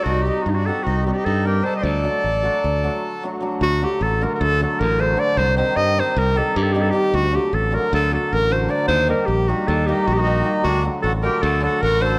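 A bright, close-miked clarinet leads this restless, bittersweet Balkan wedding-band piece in 9/8 at 306 eighth-note beats per minute in D phrygian dominant, over a growly, up-front fingered electric bass and a shimmering, ringing hammered dulcimer, while a reedy, dry accordion second line falls away at 3.2 seconds around a short break and returns at 9.9 seconds, the whole heard in a moderate recital-hall reverb.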